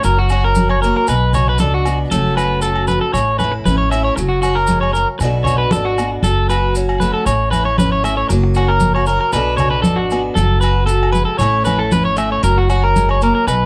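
Danceable and joyful, this highlife guitar band cut moves at 116 BPM in a straight 4/4, circling a chord loop that returns to F# after passing through Bm, F#m and A. Up front, an electric guitar at the edge of break-up spins arpeggios with a scooped, slightly broken-up tone and a slapback echo, while a bright, boxy parlour-style steel-string acoustic guitar picks the accompaniment a little further back, its finger squeaks audible. The upright bass sits forward too, woody, dark and thumpy with pizzicato steel strings anchoring the low end. Close-miked congas struck with hard hands give a thick-skinned, medium-tuned pulse, joined by grainy, mellow maracas and ringing agogo bells set in the background. Every part plays across nearly the full 13.7 seconds of this excerpt, cut from a longer piece and framed by a moderate small-room ambience.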